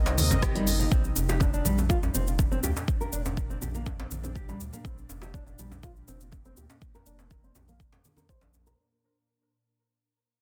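Afro house with an earthy, spiritual mood, where a deep, up-front electronic kick and smooth-hatted deep house kit with rim click and shaker join a round, dark analog bass, while thumb-plucked nylon-string guitar arpeggios pass through a filter sweep and dub echo, djembe and bright congas sit in the background of a small room, an ethereal airy pad holds sustained chords under ensemble chorus, and a brassy detuned synth stab sounds only in the opening 0.9 seconds, all shifting from Cm7 to Bb in a dense, heavily limited mix that fades out across the excerpt.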